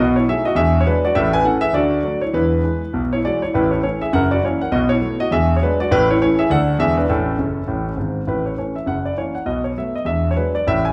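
A solo concert grand piano opens this brief, swinging stride jazz cut at a brisk 202 BPM in A major, its intimate, up-front tone carrying deep bass and audible action noise inside a large studio's lush reverb, and a playful fill at 7.4 s leads into a second pass through the tune's opening strain.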